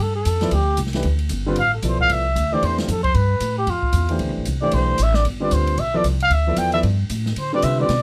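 Swung eighth notes in 4/4 drive this brief excerpt of spiritual, cool modal jazz, which sits on a single G9sus4 chord throughout. A dark, breathy trumpet solos up front with vibrato and scooped notes, backed by woody, thumpy pizzicato upright bass, while an airy small-room drum kit with dark cymbals and a boomy kick enters at 0.3 s. A concert grand piano with a deep bass register adds accompaniment from 0.4 s, all captured close and detailed with little reverb.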